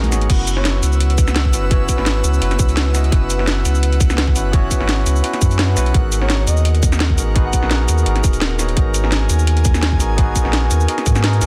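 A deep, round sine sub bass sits up front in this soulful, rolling liquid drum and bass excerpt at 170 BPM, where a tight electronic kick enters at 0.3 s beneath a kit of cracking snare, metallic hi-hats, shaker and crash cymbal, while a clean tine electric piano with delay and a bright, airy, detuned pad with chorus hold the F#7sus4 and G#m9 chords in a dry, dense, heavily limited mix, and a soft, flute-like synth lead with chorus and delay floats in the background from 0.6 s and again from 6.2 s.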